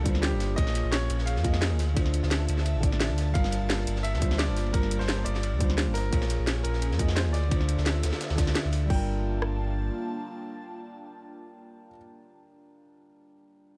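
This dreamy, melancholic liquid drum and bass fragment sits in a small room, taken from a longer piece and opening straight into the drop. A bright, brilliant grand piano carries the melody with long sustain and digital delay, while a second, dark and mellow vintage grand piano plays the accompaniment through tape echo, its action noise audible up close. An airy, breathy pad holds detuned chords with a slow attack, chorus, phaser and sidechain pumping. Beneath them, a deep, full sine sub bass with an added octave sits up front. Three layered kits drive the drop until about 8.9 seconds: a garage kit with a tight, tape-warm kick and rim clicks, a drum and bass kit with a cracking snare, bright hats and crash, and a gritty, saturated breakbeat kit with dark ride and high-passed snare. The pad and bright piano fall away at 11.9 seconds, leaving the dark piano alone until 13.8 seconds.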